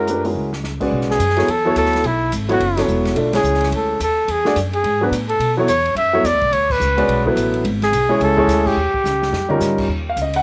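A swung, fast 4/4 pulse drives this intense, spiritual modal jazz fragment from a longer piece, where a dark, breathy trumpet with vibrato and scooped notes carries the solo melody up front over a polished grand piano, a woody pizzicato upright bass and an airy small-room drum kit with dark cymbals and a boomy kick, the band hitting accents at 3.3 and 6.7 seconds before a drum fill at 9.1 seconds, all with the soft grain of a home cassette recording.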